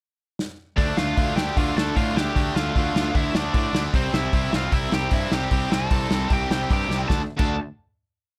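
Dry and close, with little reverb, this short, whole punk rock piece in D minor charges ahead at 152 BPM in a straight 4/4 with an angry, urgent mood. A loose acoustic drum kit sits up front with a warm, small-room sound: a medium-tuned snare, a tight kick, a rolled-off top end and a two-step groove. It opens alone with a fill at 0.4 seconds before the band crashes in at 0.8. Two overdriven electric guitars hold the background with driving eighth-note power chords, one distorted and one raw and garage-toned, while a growly, fuzzed picked bass pushes eighth notes underneath. Over the top, a biting lead guitar plays hook-based motifs, partly doubled in octaves. The verse moves from Dm to C before everything lands on a D5 final chord at 7.1 seconds.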